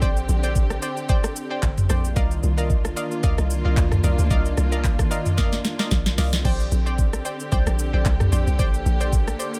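A dry-sounding, soulful amapiano excerpt where a hollow, bouncy log drum bass and an overdriven electronic R&B drum kit with a knocking kick, sharp snare and metallic hats sit up front, lush bowed strings with vibrato hold sustained chords under sidechain pumping, a round, warbling analog pluck with chorus and digital delay adds bright stabs, and the chords move from Bb69 to Cm11 and back, with a drum fill arriving at 5.4 seconds.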